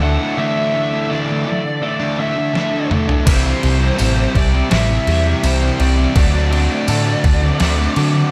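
A round, amped electric bass sits up front in this dreamy, wistful shoegaze and dream pop rock excerpt, beneath a dark, smooth overdriven lead guitar melody with slapback echo, very quiet bright, compressed twelve-string electric guitar arpeggios, and background riffs from a thick fuzz guitar with subtle chorus, a crunchy overdriven guitar with reverse reverb, and a sludgy double-tracked guitar that enters at 3.3 seconds, while a very quiet sweeping sawtooth pad holds chords only at the opening, a thumpy detuned 8-bit drum machine arrives at 2.6 seconds with a fill, and a jingly vintage tambourine joins at 4.0 seconds, set in a light reverb.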